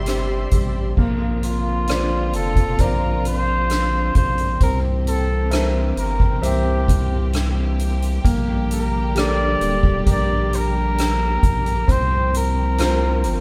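A clear, vintage-toned flugelhorn carries the melody up front with pop-style vibrato, singing between E4 and D5 across this hopeful, heartfelt pop ballad excerpt at a slow 66 BPM in a straight 4/4. Beneath it, a deep, thick sub bass with a saturated sine tone and fast attack sits prominently, holding long notes through chords that move from Cadd9 to Bbadd9, C7, Gmadd9 and a closing C7sus4. A grand piano supplies intimate, natural accompaniment, its action noise faintly audible, while a studio string section plays sustained chords with a soft attack, sul tasto bowing and a smooth top. The drum kit, entering at 0.1 seconds, is played with soft mallets on drums and cymbals, giving dark cymbals, a boomy kick, hi-hat and rim click an up-front presence. The band plays live together in a small room with moderate reverb, lending the whole performance a natural feel.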